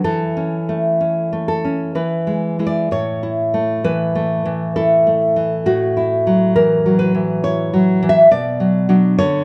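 A dark, warm recording places a full-bodied nylon-string guitar up front, surrounded by the moderate reverb of a recital hall that lets each note bloom and fade naturally. This tender, nostalgic romantic piece for solo classical guitar lasts about 9.4 seconds and is cut from a longer work. It moves in a gentle 3/4 at roughly 62-70 BPM, with a flexible rubato feel. The fingerpicked guitar has a deep classical tone and spans from A2 up to E5, tuned slightly high to A4 = 444 Hz. In A major, the harmony settles from A/E through E and back to A, colors the home chord as A69 at 5.7 seconds, and reaches toward Bm at 8.3 seconds, giving the fragment a wistful, unresolved close.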